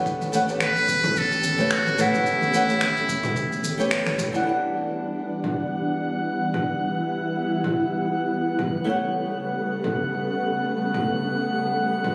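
Swung sixteenths ride a relaxed 4/4 groove in this smooth sunset chillout excerpt, cut from a longer piece and captured on a phone in a club-like room with compression and a lush hall reverb. A tape-warm deep house kit of finger snaps, shaker and toms runs throughout, while a deep electronic kick, band-limited congas and a round, nasal analog bass sit in the background during the opening and are gone by 4.4 s. Up front, a fingerpicked flamenco guitar with fresh strings and delay plays accompaniment beside a silky string machine holding chorused chords that move from Emadd9 to Em9 and A13. A buzzy, metal-muted trumpet carries a brief classical-style solo with sampler grit and digital delay, and the band hits an accent at 3.9 s. From 5.1 s a calm, glassy texture of drifting overtones fills the high register, chorused and bathed in its own reverb.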